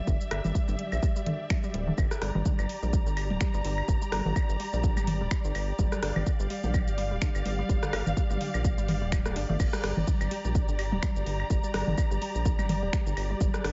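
A punchy, up-front electronic kick anchors this sparse, quirky minimal techno excerpt at 126 BPM in G dorian with a 16th-note swing, alongside a house kit of metallic hi-hats, crash, finger snaps and shaker, a booming analog drum machine re-recorded in a large room playing claves, congas, rim click and toms, a rubbery, nasal square bass with tube saturation and sidechain pumping, a hollow, bouncy square pluck riff in the background treated with chorus, phaser, tape echo and pumping, and a dark, veiled, con sordino string section that bows a distant pumping texture over a single G minor chord, all in light reverb with rolled-off highs.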